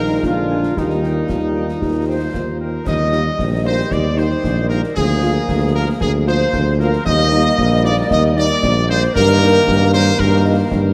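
A festive, rousing military-style march for wind band in Eb major at 114 BPM opens with a clear trumpet section carrying the melody over a punchy, up-front tuba bass, dark trombone chords, mellow French horns, a woodwind second line and a brief euphonium line that stops at 2.8 s, while concert snare, bass drum and bright clash cymbals sit in the background, a very quiet, hollow flute ensemble joins at 2.1 s, and the whole short excerpt rings in a vast, echoing cathedral space.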